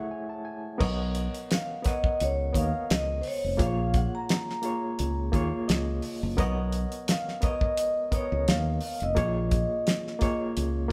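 A ringing vibraphone struck with medium mallets carries the melody from the first moment, its metallic tone softened by a slow motor vibrato and an airy edge. This short excerpt of lush 1970s-style soul feels smooth and unhurried, with a light swing on the sixteenths. Beside it, a bright, barky reed electric piano supplies accompaniment through its built-in speakers, lightly overdriven and shimmering with fast tremolo; it opens with a brief fill before the band arrives and adds another around 5.3 seconds. At 0.8 seconds a fingered electric bass, dark, round and punchy, enters alongside a damped 70s drum kit whose fat snare, tight kick, hi-hat and crash sound dry with a rolled-off top, both sitting up front. The harmony rests on lush major-seventh and ninth chords, moving from Amaj7 to Bmaj9 and a rootless F#maj9/A#. The band plays live together in a large studio, and moderate reverb lends the whole a cosy, warm glow.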